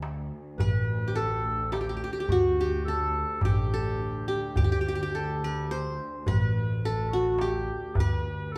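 In a straight 10/8 at 106 BPM counted in eighths, a crisp metal-shell darbuka sits in the background beside a woody, dark pizzicato upright bass and an intimate bowed cello section that holds a soft, sul tasto drone on D with light vibrato. This stately Turkish makam ensemble piece in D hicaz is played live in one room and bathed in a wet, large studio reverb. At 0.6 s the fingerpicked qanun enters up front with a bright-edged triple-string melody, joined by a solo clarinet in classical style carrying a second line, and the warm mood holds through to the cut at 8.6 s.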